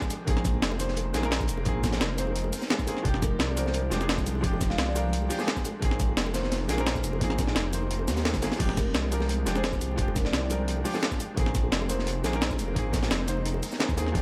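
A worn, deep-bodied concert grand piano with delay opens this rolling, soulful liquid drum and bass cut at 173 BPM, joined from the start by a faint, shimmering granular pad, a gritty, pitched-up sampler breakbeat kit up front with cabasa and crash, a thumpy compressed kick, a dark, saturated second break kit tucked in the background, and very quiet, tight high-tuned bongos. At 0.3 seconds an evolving, menacing detuned saw bass surges in with a filter swell, sitting prominently beneath chords that alternate between Bb9sus4 and Fm69. A mellow, woody marimba played with soft mallets adds brief tape-echoed phrases in the background, first at 3.2 seconds, all within a snug small-room ambience.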